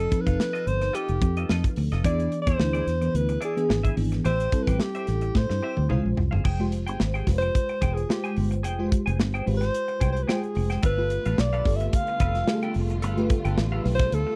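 A lightly swung 4/4 groove from a punchy, up-front studio drum kit and a foam-muted fingered electric bass drives this glossy, urban 1980s jazz-funk pop cut, where a breathy alto saxophone with slapback echo carries the melody over a sparkling, bell-like FM electric piano with tremolo and chorus, a bright, clean semi-hollow guitar riff, a drum fill leading into the second section at 6.4 s, and a lush, distant string section with portamento that joins at 10.8 s, all in a dry, close 1970s-style studio sound.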